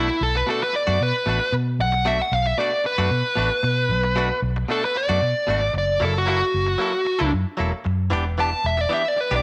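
Straight-eighth soul blues with a soulful, smoky mood, this short excerpt cut from a longer piece moves at a steady mid-tempo with a light sixteenth-note swing. A dark, smooth lead guitar carries the melody up front, its picked tone thickened by overdrive. Beneath it, a bright, twangy clean electric guitar, recorded direct and compressed, plays picked stabs at a lower level. A vintage fingered electric bass, foam-muted and round, sits forward in the mix and anchors the low end throughout. The harmony rests on Bm7 before shifting to F#7#9 at 6.0 seconds and Em7 at 8.1 seconds, all set in a moderate echo-chamber reverb with a digital ambience.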